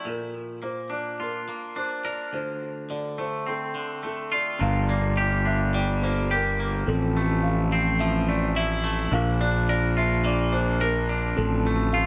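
A twangy, clean electric guitar and a felt-muted upright piano open together, both playing arpeggios through tape echo, the picked, scooped guitar up front while the soft, dark piano sits mellow and intimate behind it. This melancholic, brooding post-rock passage moves at 106 BPM in a straight 4/4 and is cut from a longer piece. The harmony starts on Bb and Dm7. At 4.6 seconds a fuzz-drenched fingered electric bass arrives up front, growly and overdriven, alongside a pedal steel guitar in the background whose compressed slide chords use volume swells. From there the chords pass through Gm7, Fmaj7/A and back to Bb before settling on Dm7/A, and all four parts carry on to the cut at 12.1 seconds. A moderate, lush hall reverb gives the whole passage a spacious atmosphere.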